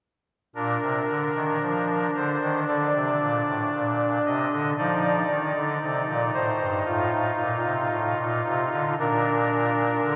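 Classical chorale-style music for solo pipe organ, this short excerpt from a longer piece moves at a slow, straight 57 BPM in 4/4 and carries a reverent, serene mood. A soft reed voice, the oboe stop drawn as a solo stop with romantic voicing and a tremulant, sounds up front from 0.6 to 10.2 seconds, spanning G2 to Eb5. Rooted in Bb major, the harmony rests on Bb, moves to F7 at 4.8 seconds, and settles back on Bb at 9.0 seconds. The soft reed tone sits inside a wet church acoustic with a long 4.0-second reverb tail that lends the phrase a spacious, hushed glow.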